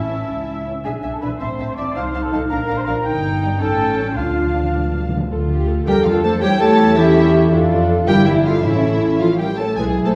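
A restless, dramatic classical-period orchestral movement in D minor, moving quickly in 6/8 at 108 BPM. Muted violins carry a veiled, con sordino melody over a second violin line, background violas, and a dark foundation of muted cellos and double basses, while dark clarinet, hollow flute, and a distant cor anglais (heard only until 5.1 s) add secondary lines alongside mellow French horn chords. Close, hard-mallet timpani punctuate the opening, play a fill from 4.2 s, and return at 8.6 s, all set in a church-like hall with a wet reverberant wash.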